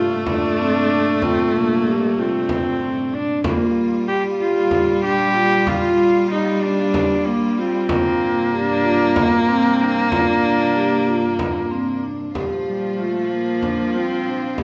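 A dark, warm production sits in a moderate recital hall, giving this short cut from a longer piece of contemporary chamber music a hypnotic, urgent mood. Moving in 7/8 at 189 BPM counted in eighths, it opens with a bowed cello carrying the melody up front, its gut-string, period-style tone reedy with a smooth top. A bowed viola plays a second line beside it, clear and even with vibrato, while a lush symphonic string section holds sustained chords lower in the mix. A vibraphone struck with medium mallets, motor off, spins ringing, metallic arpeggios. From 0.3 seconds a deep frame drum played with hard hands sounds large and distant, as though from a big room. The harmony circles between Bbadd9/G and Gm7 before settling on Bb as a new section begins at 12.3 seconds.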